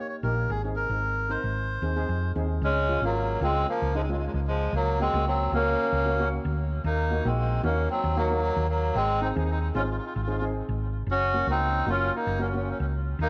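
A bouncy, sunny calypso groove with a light swing, cut from a longer piece. A reedy, breathy melodica carries the tune up front with plate reverb and delay, while a mellow, shimmering steel pan played with soft rubber sticks provides gentle accompaniment and a round, dark hollow-body electric bass anchors the low end from 0.2 seconds. The whole recording has the worn, warbling pitch drift of old cassette tape in a moderate studio room, as the chords move from Ab through Db, Gb and Ebm.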